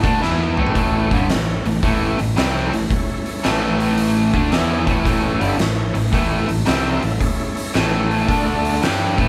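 A crunchy, double-tracked overdriven guitar riff sits up front over an oversized low-tuned drum kit with a fat snare and boomy kick that opens with a fill at 0.2 seconds, while a growly fuzz bass punches underneath and a thick overdriven tonewheel organ with key click and fast rotary speaker enters at 0.7 seconds in the background, giving this short, gritty, raunchy slice of swung blues rock and southern rock the feel of a power trio playing live in one large reverberant room.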